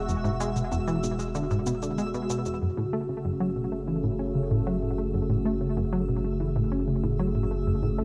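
Mysterious and cosmic, this short cut from a longer piece of ambient, sequencer-driven space music moves at 95 BPM in F# minor, where a tight, driving, detuned sawtooth-and-square sequenced riff with a plucky filter, chorus, analog delay and cassette-tape coloring sits up front beside a bright, resonant, slowly swelling pad of sustained chorused chords, all over a deep, round sine sub bass with tube saturation, a faint twinkling FM granular shimmer with its own reverb, and dry electronic congas and shaker with analog delay that play until 2.6 s, when the harmony shifts from E to F#madd9 and the synth texture fades in under light digital ambience and cassette-tape grit.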